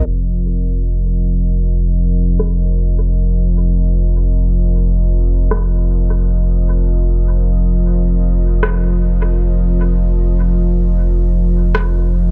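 A soft dub sub bass sits up front from 0.1 seconds, holding a deep, round F1 with a fast attack and a sustained body thickened by tube saturation. This short ambient dub excerpt moves in free time and carries a peaceful, hazy mood. The warm analog pad opens at 0.0 seconds with smooth, detuned sawtooth chords on F7sus4 that rise in slowly and sustain under a chorus effect, spanning F3 to Eb5. An electronic rim click enters at 2.4 seconds, quieter and tape-tinged, heard as if re-recorded in a small room, with its snare and room sound low-pass filtered and trailed by dub echo. The mix is dry of reverb but echo-heavy and darkened by a low-pass filter, with a filter sweep running through the whole passage.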